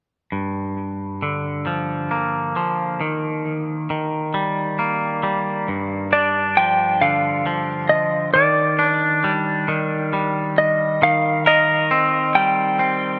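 Brooding and cathartic, this slow rock passage in G minor moves at 45 BPM in a straight 6/8 feel, cut from a longer piece. A twangy electric guitar opens at 0.3 seconds with picked arpeggios through Gm7 and Eb, its clean, compressed tone sitting up front and trailed by analog delay. At 6.1 seconds a clean lap steel guitar enters with a slide melody high in its range, fingered and compressed, with its own analog delay, as the harmony shifts through G5, Ebmaj7 and Cm7/Eb. Both guitars carry a twangy, electric character, while the lap steel sits slightly louder in the balance. A huge ambient reverb with a long 4.9-second tail surrounds the two parts, lending the sparse arrangement a vast, lingering space.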